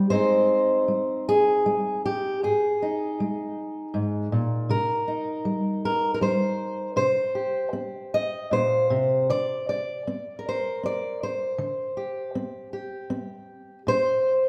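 Folk piece for solo fingerstyle acoustic guitar, intimate and reflective, moving at an unhurried 79 BPM in 3/4 with a straight feel. A single fingerpicked steel-string acoustic guitar carries the whole recording from start to finish, ranging from Ab2 up to Eb5. Its tone is warm and auditorium-sized, placed up front so the picking sits close to the listener. The harmony moves slowly from Ab to Cm at 4.7 seconds, then to Gsus4/D at 9.3 seconds, touching Bbsus2 just before the close. A moderate scoring-stage reverb gives the guitar a gentle halo of space, and the passage is cut from a longer piece, ending at 14.5 seconds.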